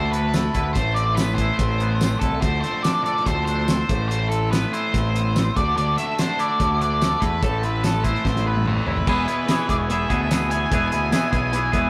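This short excerpt from a longer indie rock piece opens with the guitars and bass together: an octave-fuzz lead guitar carrying a dark, fuzzy melody over a fuzz guitar riff, a twangy electric guitar riff and a growling, overdriven electric bass, with the drum kit joining at 0.1 s. The mood is cool and bittersweet, moving at 144 BPM in a straight 4/4 in A minor, with chords cycling between Dadd9, Amadd9 and Dm7 before settling on E at 9.1 s. The clean, scooped tone of the fingered twangy guitar sits against the bright, compressed fuzz guitar tucked in the background, while the bass stays up front, direct and amped. The cloth-damped drums sound thuddy and gritty, with a fat snare, tight kick, dark cymbals, tambourine and toms, and a drum fill from 8.2 to 9.1 s leads into the closing section. A moderate stone-room reverb and rough rehearsal-room character, with warm saturation, shape the overall sound.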